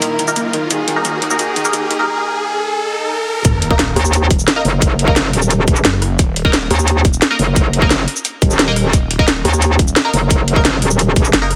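Tense and aggressive, this dark technical drum and bass cut runs at 175 BPM in a straight 4/4, centred on Eb phrygian. It opens on a build-up where a rich, earthy chamber string section holds sustained chords and a round analog pluck plays arpeggios through chorus, cassette tape and delay, with a filter sweep on the arpeggio, while a riser climbs through 3.4 seconds. Underneath, a swirling, thick phased detuned saw bass with overdrive and a layered drum kit of cracking snare, metallic hats, rim click and shaker drive from the start, joined by a nasal, band-passed chord stab carrying ring modulation, phaser and ensemble chorus. At 3.4 seconds the drop hits with an impact and sub drop, bringing in a tight electronic kick, and at 4.0 seconds a metallic, FM wobble bass with chorus takes the front. The strings, pluck and the saw bass pump against the sidechain, and the mix sits in a lush digital hall reverb with a heavily compressed, radio-like finish.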